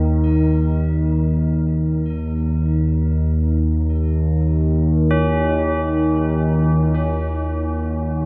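Unsettling and ominous, this short cut from a longer dark ambient drone piece drifts in free time in Eb minor, with an up-front, warbling, detuned analog drone thickened by chorus beneath quieter, metallic tubular bell arpeggios trailing tape echo, while a very quiet, breathy, wind-like tuned noise texture surfaces at 7.6 s, all set in a huge ambient reverb.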